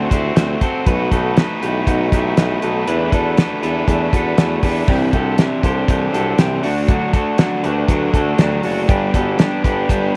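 Restless and bittersweet, this excerpt from a longer piece of jangly indie pop moves at 120 BPM in a straight 4/4, with a bright, crunchy overdriven guitar up front over a thuddy, cloth-damped acoustic drum kit with dark cymbals and a fat snare, a clear, punchy tuba carrying the bass with scooped notes, and a twangy, slightly broken-up electric guitar picking arpeggios in the background, all under light reverb as the chords shift from D7 through E7sus4 to Cadd9 at 4.9 seconds.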